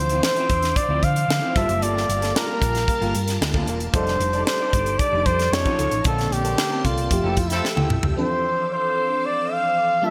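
Bright, glossy 1980s-style digital production sets this polished, urban jazz-funk pop excerpt in a lush hall reverb with a touch of small-room ambience, moving in a straight 4/4. Up front, a breathy flugelhorn carries the melody with a mellow, whispered tone, soft attack and light vibrato. Beneath it, a glassy, bell-like FM electric piano with ensemble chorus plays the accompaniment, while a swirling sawtooth string machine, treated with chorus and phaser, holds sustained chords in the background. A slightly broken-up, lo-fi guitar through a small old amp picks a riff drenched in lush chorus, a dark, round hollow-body bass anchors the low end, and a dry, tight funk kit with a high-tuned snare and gated reverb sits prominently in the mix. The harmony moves through rich chords such as Dm9, Gm9, F13 and Bbmaj9, and a band accent begins at 6.1 s, capped by a brief, clear, octave-doubled horn-section line at 7.2 s and a drum fill from 7.6 s. 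Guitar and bass stop at 8.1 s, with the drums following just after, leaving flugelhorn, electric piano and strings over a return to Dm9.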